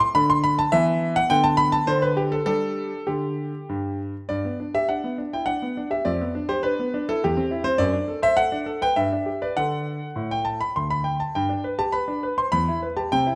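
This classical-period piano sonatina in G major moves at a playful, graceful 102 BPM in 3/4 with a straight feel, tuned to A4 = 443 Hz. A clear concert grand plays alone, up front and natural in tone with a short sustain and deep bass, spanning D2 to C6. It opens with a brief statement touching E5, a Gadd9/D chord and G5 before settling at 4.3 seconds into a restatement of its opening idea over G, C/E, D7/F# and D chords, set in a moderate recital hall reverb and closely, detailed miked, in this short cut from a longer piece.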